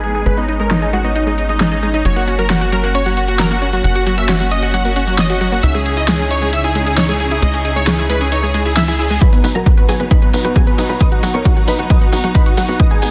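A dense, heavily limited modern mix with light reverb carries this driving, soaring uplifting trance cut at 134 BPM in 4/4, where huge, detuned supersaw chords lead with sidechain pumping and dub echo over a nasal, tube-saturated sequencer bass, biting symphonic strings, a chorused, warbling analog pluck arpeggio and an airy supersaw stab set in the background. An overdriven dance kit with a huge snare and hi-hats runs throughout as filter sweeps shape the pluck and strings across the first 9.2 seconds, moving through G#m, F# and C#madd9. A reverse cymbal at 8.7 seconds leads into a build-up on B at 9.2 seconds, where a punchy, tape-warm electronic kick enters up front while a filter sweep moves over the supersaws.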